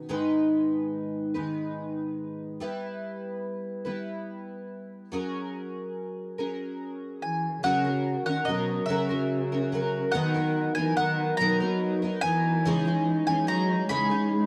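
A dry, close 1970s-style studio sound with light reverb frames this pastoral, gentle acoustic folk passage in 6/8, cut from a longer piece: a shimmering, octave-doubled twelve-string acoustic guitar with analog chorus plays alone until a bright, woody mandolin melody and an expressive bowed cello line with vibrato and portamento join at 7.2 seconds, and a mellow, distant French horn section adds sustained chords in the background from 7.6 seconds.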